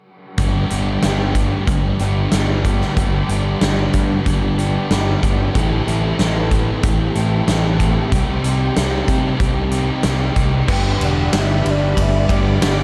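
Hazy and dreamy, this 93 BPM shoegaze and dream pop passage in G major opens with a thick, dark fuzz guitar, a hollow-bodied overdriven guitar with reverse reverb, a growling, punchy fingered bass and a huge, up-front arena drum kit. A twangy, clean twelve-string guitar adds background arpeggios from 5.5 seconds, and at 10.7 seconds a round, detuned synth lead melody arrives with shimmering string-machine violins and a raw, double-tracked garage guitar, all washed in a reverb-soaked haze.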